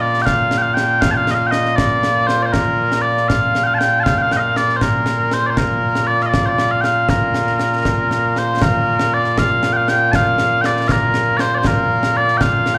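A 6/8 pulse at 79 beats per minute in straight time carries this proud, stirring piece of Scottish pipe music in Bb major, a short cut from a longer performance heard live through a club's PA with moderate reverb. Mellow small bagpipes lead the melody up front from the opening, sweet and continuous with vibrato, ranging from Bb2 to A5 and coloured by plate reverb and slapback echo. Concert snare and bass drum join at 0.1 seconds, acoustic, close and dry with dark cymbals, sitting beneath the pipes as the opening theme returns at 8.6 seconds.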